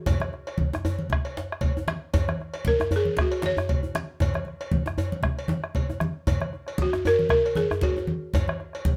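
A woody, buzzing balafon played with rubber mallets stands out in this short cut from a longer West African traditional drum ensemble piece, entering at 2.7 seconds and carrying a melody between F#4 and C#5 in F# major pentatonic until 8.2 seconds. Its dry, full, close-miked sound sits up front. Underneath, the percussion drives at 116 BPM in 4/4 with a lightly swung sixteenth-note feel, giving the music a powerful, driving mood. A round, close bombo anchors the low end, while a medium-tuned djembe adds a metal rattle. Low-tuned congas with a thick skin and soft hands bring a gentle body from a small room, and a metallic cowbell rings out in a live space. Light reverb lends a touch of air to the ensemble.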